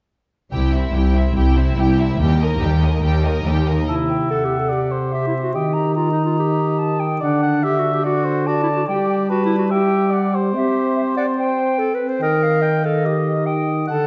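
A mellow French horn section, up front and punchy, holds sustained chords from 3.9 s in this heroic, soaring cinematic excerpt at 144 BPM in straight 4/4. It opens with lush bowed strings alone: a violin section carries the melody with smooth, even vibrato, a second, clear and intense violin section adds a line beneath it, and a viola section fills in accompaniment in the background. Cello and double bass sections anchor the bass, the cellos expressive and the basses full and distant. At 3.9 s the strings give way to woodwinds and horns: a solo cor anglais with light vibrato, a pure, straight-toned silver flute with a crisp attack, and a close-miked clarinet each play second lines over the horns. The harmony moves through C, Eb, D and G, and the dark production sits in a wet scoring-stage reverb that lends depth.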